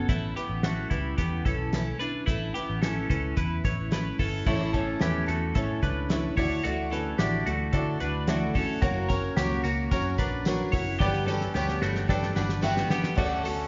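Jangly indie pop with a youthful, bright mood, moving at 110 BPM in a straight 4/4, cut from a longer piece. A twangy, compressed twelve-string electric guitar sits up front playing arpeggios through a phaser, over a full-bodied jumbo steel-string acoustic guitar picking the accompaniment. Beneath them a vintage muted electric bass gives a round, foam-muted, amped low end, while a cloth-damped, thuddy drum kit supplies a fat snare, tight kick, hi-hat and dark crash cymbal. A woody, brilliant upright piano with short sustain joins at 4.5 seconds as the harmony moves from G to A, and a jingly, saturated tambourine appears in the background at 8.8 seconds on an F# chord. Near the close, with the harmony back on G, a drum fill starts at 11.0 seconds and the piano adds a fill of its own, all wrapped in a wet recital-hall reverb with a rolled-off top.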